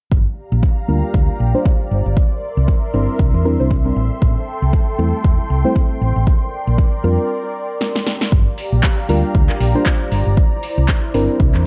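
Deep house at 117 BPM in G dorian with a swung 16th feel, this moody excerpt from a longer piece moves through Gm7, C9, Am7 and Bb69 beneath a smooth, warbling vintage pad with chorus and sidechain pumping, while a round, dark hollow-body fingered electric bass sits up front under a filter sweep and a deep electronic kick drives the pulse. Soft, decaying chord stabs with chorus, pumping and dub echo enter at 0.9 seconds, and after a break from 7.3 seconds a layered deep house kit arrives at 7.8 seconds with a fill, bringing a punchy snare, metallic hats and handclaps. Both the kick and the kit carry overdrive and the sound of a large room, and the whole piece sits in an echo-heavy mix with light reverb.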